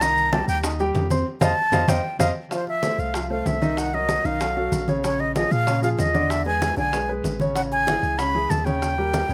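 A straight 4/4 pulse at 190 BPM drives this lively, danceable Afro-Cuban jazz clip, where a breathy, close-miked concert flute with slapback echo solos up front from 0.0 s over an intimate grand piano with audible action noise, a deep, punchy sine sub bass, bright low-tuned congas, round vintage-sounding bongos with their own slapback echo in the background, and grainy, distant maracas, as a drum fill and band accent arrive at 1.3 s before the harmony moves on at 2.5 s, all in a dry outdoor sound.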